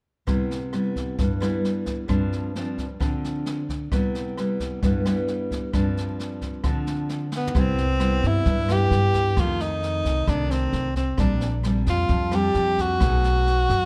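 Sunny and romantic, this bossa nova excerpt opens with an up-front, fingerpicked nylon-string guitar in classical style rocking between Cmaj7 and G7sus4, over a jazz kit played with brushes that has a boomy kick and a natural small-room sound. A drum fill at 7.3 seconds ushers in a breathy tenor saxophone solo with subtone, light vibrato and scooped notes at 7.4 seconds, joined at 7.6 seconds by a woody, thumpy pizzicato upright bass as the harmony moves through F6, Bb69 and B6. Light reverb and a dark, warm production round out the sound.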